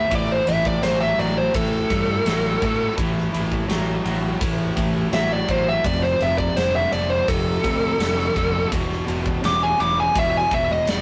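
Brooding and smoky, this blues rock and southern rock power-trio passage puts a dark, compressed fuzz lead guitar up front, soloing across the full 11 seconds over a double-tracked, overdriven cranked stack guitar riff and a growling, punchy fingered electric bass. A huge arena drum kit enters at 0.1 seconds with kick, snare and ride, its bright cymbals and pumping hall sound driving the band as the chords move from A5 through F to E5. A stone room reverb and warm saturation give the whole a rough rehearsal-room character.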